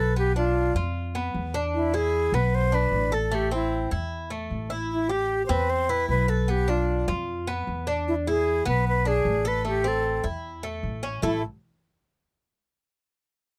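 Latin Cuban son in the guajira vein, this sultry, nostalgic passage cut from a longer piece sets a breathy concert flute melody, straight-toned and soft in attack, over the mellow, metallic arpeggios of a picked Cuban tres with double strings. A woody, thumpy pizzicato upright bass on gut strings anchors the low end, with all three parts sitting up front in a close, detailed and nearly dry sound. The harmony circles through Bdim, E7 and Am before settling on an A5 chord at 11.2 seconds.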